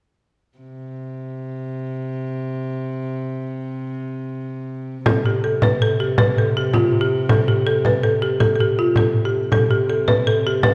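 A woody folk marimba struck with hard mallets carries the melody of this festive, ancient-sounding medieval dance in a straight 2/4, entering up front at 5.1 seconds alongside a small, bright frame drum played with soft hands. Beneath them, a reedy viola da gamba with light vibrato and a gut-string tone holds a low drone, playing alone from 0.6 seconds. Cut from a longer piece, it is heard from further back in a recital hall whose wet reverb lingers.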